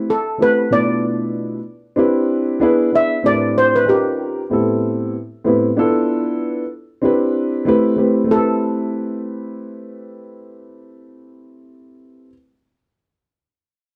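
Hip hop at 95 BPM in A minor, this nocturnal, cool fragment of a longer piece moves with a 16th-note swing through jazzy chords like Am9, Cmaj9, E7 and D#9, tuned slightly flat to A4 = 438 Hz. A shimmering, airy steel pan carries the melody up front with plate reverb, while a dark upright piano with a smooth, woody, vintage tone supplies up-front accompaniment across all 12.3 seconds. A moderate studio reverb of about half a second surrounds the pair, and a new passage begins at 8.3 seconds.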